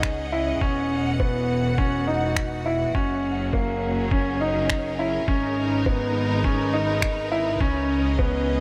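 A small, lightly reverberant room holds this melancholic, intimate piano and strings electronica excerpt in G# minor at 103 BPM, where a smooth, vintage baby grand piano sits up front playing a riff through a low-pass filter and tape echo, over lush bowed strings and a rich, expressive double bass section that both carry sidechain pumping, alongside a muffled, thumpy, pitched-down kick, while overdriven, layered finger snaps stop at 7.1 seconds.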